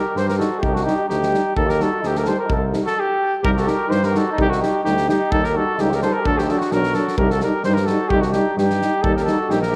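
A lightly swung 2/4 pulse at 128 BPM drives this fiery, bittersweet Balkan brass band excerpt in C dorian sharp4, with a muffled, lo-fi drum kit of punchy kick and fat snare joining the warm tuba bass at 0.2 s. Up front, a mellow, vintage trumpet carries the melody through a delay, while a soft-attack flugelhorn with light vibrato plays a distant second line and the French horn and euphonium hold accompaniment in the background. The band sits in a dreamy mix soaked in plate reverb, cut from a longer piece.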